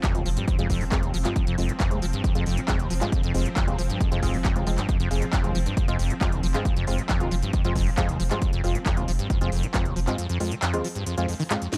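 A squelchy, resonant sawtooth acid bass sits up front with a filter-swept riff through chorus and tape echo, driving this intense, industrial peak-time techno cut in F minor at 136 BPM, over a saturated sine sub bass, a detuned, granular drone swarming in the background, and muted, detuned dub chord stabs soaked in cassette grit and echo. An overdriven, heavy electronic kick anchors the straight 4/4 with a layered kit of cracking snare, handclaps and smooth hats, the kick dropping out at 10.2 seconds while the pumping bass and stabs carry on. The sound is dry and gritty, with little reverb, like a hardware recording cut from a longer piece.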